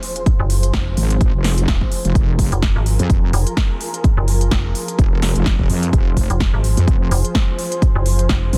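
Dense and heavily limited, with a digital ambience, this short clip of a longer bass house track has a swaggering, bouncy feel and a light swing on the sixteenths. A clear symphonic string section sits low in the mix from the start, holding a sustained F minor chord with light vibrato and a smooth top, low-pass filtered and pumping against the sidechain. An overdriven big-room dance kit supplies crisp hats and a punchy snare, set in a large room, while an up-front electronic kick with a tape-warm weight, re-recorded in a small room, comes in at 0.3 seconds. A metallic FM bass with a fast, decaying attack joins at 0.4 seconds, its digital tone thickened by tube saturation and sidechain pumping. At 1.0 seconds a heavy wobble bass joins the low end, built from detuned sawtooth and sine layers with a resonant, saturated edge, chorus and overdrive, ducking with the sidechain.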